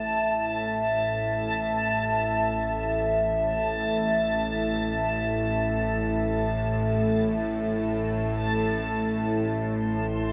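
Soaked in a lush, dreamy hall reverb with a dulled top end, this desolate dark ambient drone, cut from a longer piece, drifts in free time around a sustained A5 chord. A deep, moody analog pad colored by chorus and phaser holds the chords above a tense, string-like bowed drone in the low register, while a reversed, granular backwards swelling texture hovers high overhead. All three parts sound through the full 10.3 seconds, each with a slow attack and long release.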